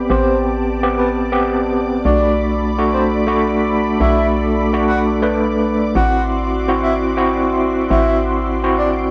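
A swung 4/4 groove at 123 BPM carries this moody deep house fragment, where a hollow, bouncy FM bass with a punchy, decaying attack sits under an overdriven tine electric piano playing gritty stabs up front, shimmering with fast tremolo, a low-pass filter and tape echo. A smooth vintage analog pad holds sustained chords with subtle chorus, while a silky string machine adds a faint, warbling ensemble-chorus texture high above. From 0.1 seconds a breathy, flute-like synth lead with vibrato sings the melody through chorus and tape echo, all set in light digital ambience over chords moving from Am9 to Bm7 at 2.1 seconds and D9/A at 6.0 seconds.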